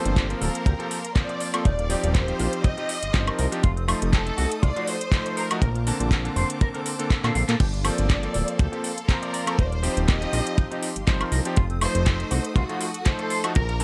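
A fat, detuned sawtooth analog bass with tube saturation and sidechain pumping drives this groovy, cosmic nu-disco passage at 121 BPM with a light 16th-note swing, cut from a longer piece, alongside a tight, dry kick up front and a layered electronic house kit of metallic hi-hats, handclaps, woodblock and crash cymbal with a drum fill at 7.2 seconds. A bright, clangy vintage electric grand piano with slapback echo plays accompaniment, a twangy envelope-filtered guitar with lush chorus picks a riff in the background, and a distant, expressive violin section with tape echo carries the melody over very quiet, focused symphonic strings holding chords through Gm11, Eb69, F7b9 and Bbmaj9.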